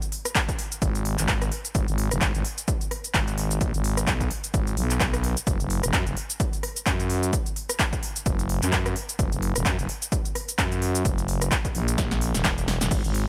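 A dry, close-sounding mix carries this aggressive, gritty bass house fragment, cut from a longer piece and moving with a swung sixteenth-note feel in 4/4. An up-front big-room dance drum kit, overdriven and re-recorded in a large room, sets crisp hi-hats, a punchy snare, handclaps, rim clicks, cabasa and crash cymbal over a punchy, layered electronic kick, also overdriven. From 0.8 s a growling FM bass, thick and sustained with a fast attack, pumps against the sidechain and adds overdrive of its own before a drum fill at 12.0 s.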